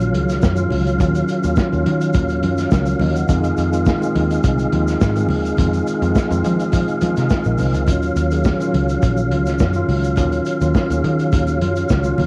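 A home cassette recording with a moderate studio reverb frames this glamorous, danceable disco excerpt in Eb dorian, moving at 105 BPM over chords of Ebm9 and Fm7. A mellow tine electric piano plays accompaniment while a percussive tonewheel organ, with key click, chorus vibrato and a fast rotary speaker, holds sustained chords; both carry a tape tint and a plate reverb. Beneath them a dark, foam-muted picked electric bass sits prominently over a muffled vintage kit with a punchy kick, while very quiet hard-hand congas and a grainy tube shaker in the background round out the groove.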